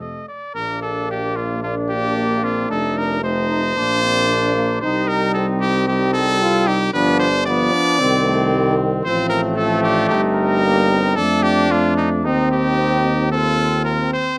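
A rubato 4/4 pulse around 113 BPM carries this noble, triumphant brass quintet fragment in Bb major, its harmony moving from F through Bb, F7, Cm and G7 into a descending chain of inverted chords. A clear trumpet sits up front with the melody while a distant, roomy flugelhorn traces a second line in the background. A mellow French horn with vibrato and a close-miked trombone fill in the accompaniment, and a warm tuba with light vibrato anchors the bass, all framed by close, detailed microphones and light reverb.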